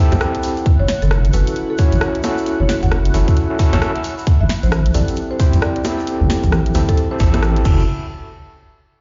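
A buzzing marimba with medium mallets carries the melody from the first moment, woody and set in the background with a digital delay, over a smooth sawtooth analog pad holding sustained chords with chorus and sidechain pumping. This short cut from a longer two-step UK garage track runs at 133 BPM in 4/4 with a swing of 61% on the sixteenths, its soulful, late-night mood moving between Am7 and F#m7. An overdriven tine electric piano punches out barky, gritty stabs through a combo amp with medium tremolo and digital delay, while a deep wobble bass, saturated and detuned with chorus and sidechain pumping, sits up front from 0.1 s. The garage drum kit brings a cracking snare, bright hats, rim clicks, bongos and crash cymbal, joined by a grainy tube shaker in the background and a tight, layered electronic kick that lands up front at 0.7 s. The mix has a muffled top end with nothing above 7.5 kHz and a large studio reverb, as if played on a big sound system in a bare room, before the chords drop out at 7.9 s.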